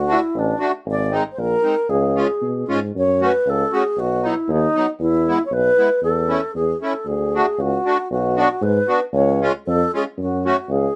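Jolly and festive, this alpine dance-band excerpt in 2/4 sets an airy, vibrato-touched alto flute melody over sweet accordion chords with light tremolo tuning and a roomy, warm tuba bass, the three playing together for about 11 seconds in light reverb.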